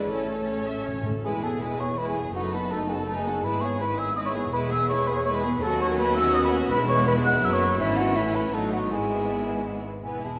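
A quick, graceful classical-period movement for symphony orchestra in E major at 164 BPM in 3/4, cut from a longer piece, with an intimate chamber violin section carrying the melody while a pure, hollow flute, a distant clarinet and a background studio violin section play second lines alongside lush violas, tight mellow French horn chords, and a smooth, even foundation of cellos and double basses. Very quiet, round timpani open with a soft-mallet fill from 0.1 to 1.2 seconds and return briefly at 6.7 seconds. The harmony moves from A to E and through B7 and its inversions before settling back on E, all bathed in a wet scoring-stage reverb.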